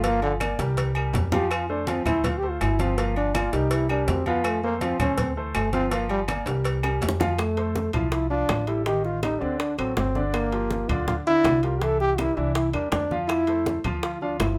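A light reverb frames this sunny, sophisticated Afro-Cuban jazz excerpt in F major at 163 BPM, where a mellow, punchy trombone with light vibrato solos up front through the opening 7.4 seconds over a natural, short-sustained baby grand piano, a woody pizzicato upright bass, ringing agogo bells and timbales, brilliant low-tuned congas in the background, tight high-tuned cowbell and bongos, and background claves entering at 0.4 seconds, with drum fills at 0.6 and 6.5 seconds before the harmony shifts from Gm7-C5-F-Dm7 cycles to richer chords like Fadd9 and F13/A.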